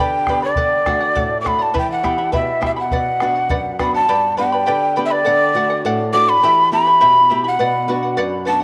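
A breathy, mellow cane quena leads this short fragment of festive, earthy Andean folk, sitting up front with a crisp, chiffy attack, vibrato, rolled-off highs and a slightly unsteady tone, its line trailed by tape echo as it moves between D5 and D6. Beneath it, a shimmering charango fingerpicks its double strings, some doubled at the octave. A fingerpicked flamenco guitar adds a sparkling acoustic layer lower down, reaching from F#2 to G4. A round bombo, heard in a live room, beats from 0.3 to 3.9 s. At 103 BPM in a straight 2/4, the ensemble cycles twice through G, D, Em and Bm, the second pass starting at 4.1 s, all set in a wet plate reverb.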